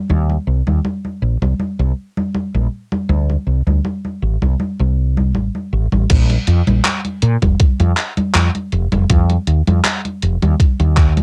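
A woody, round fretless electric bass with a dark, tube-saturated tone opens this nostalgic, faded vaporwave fragment at 80 BPM in Bb major, tuned slightly flat to A4 = 435 Hz. A gated 80s digital drum machine of congas, handclaps, hi-hat and crash plays with it from the start, gritty with 12-bit sampler crunch and cassette tape warmth, in a lightly swung 4/4. At 6.1 s a thumpy electronic kick joins up front for the second section, and the close, dry sound of a home cassette recording frames the whole cut from a longer piece.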